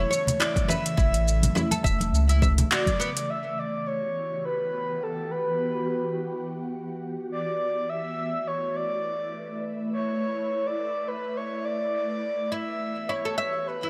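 Organic downtempo at 104 BPM in E dorian, hypnotic and meditative, cut from a longer piece. A breathy, flute-like synth lead carries the melody with chorus, vibrato and digital delay over an ethereal, detuned pad that pumps with sidechain and phaser. For the opening seconds a round, tube-saturated analog bass, woody plectrum-plucked oud arpeggios, soft-handed congas in the background, a tape-toned deep kick and a deep house kit of handclaps, metallic hi-hats and shaker groove with a light swing, landing a band accent at 2.7 s, before the rhythm section falls away by 3.3 s and the oud returns at 12.5 s, all within a bright 1980s-style digital sheen and plate reverb.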